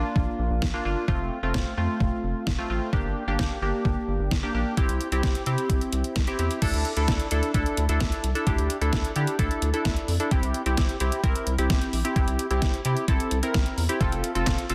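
A detuned 8-bit drum machine sits up front from 0.2 seconds, its thumpy kick, fat snare, handclaps, hi-hat and crash given an overdriven, small-room grit in this upbeat, bright synth-pop cut at 130 BPM in straight 4/4. Beneath it, a rubbery square-wave bass with a hollow, dark, resonant filter pluck carries the low end, while a punchy, funky sawtooth polysynth comp with chorus plays the chords Bb, F, Gm and C before shifting to Dsus2 at 6.6 seconds. Light reverb and a dense, heavily limited modern master keep the sound tight and forward.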